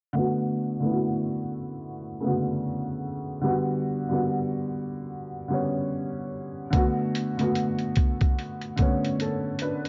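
This lo-fi hip hop excerpt moves at an unhurried 73 BPM in 4/4, with a 60% swing on the sixteenths giving it a loose, laid-back sway, and its mood is nostalgic and hazy. A felt-muted upright piano carries the accompaniment from the start, soft and intimate, with a boxy, thin-felt tone and audible action noise sitting up front, passed through cassette tape and a low-pass filter, with a filter sweep running across it. The chords move from Bm7 to Gmaj7 and back to Bm7 at 6.7 seconds in B minor, the piano ranging from C#3 to B4. At that same point a sampler-style drum kit enters with hi-hat and a thumpy kick, compressed, pitched down and muffled, carrying a gritty 12-bit character and a tape-warm feel. The whole recording sounds like worn, warbling old tape, with pitch drift, light reverb and a small room ambience, and its top end is capped at 7.7 kHz.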